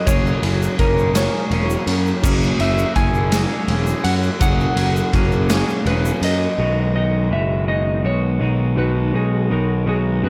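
A slow, straight 6/8 pulse at 55 BPM carries this wistful, jangly indie rock excerpt in B major, where a dark, fingered clean guitar melody with subtle chorus and delay rides over a twangy chorus-drenched guitar riff, a very quiet overdriven garage guitar, a round fuzz bass up front, a gritty, punchy garage drum kit and grainy egg shaker, with mellow rubber-mallet glockenspiel ringing in the background, all soaked in dreamy plate reverb until glockenspiel, shaker, drums and garage guitar drop out between about 6.2 and 6.6 seconds as the harmony shifts from F#add9 to B6.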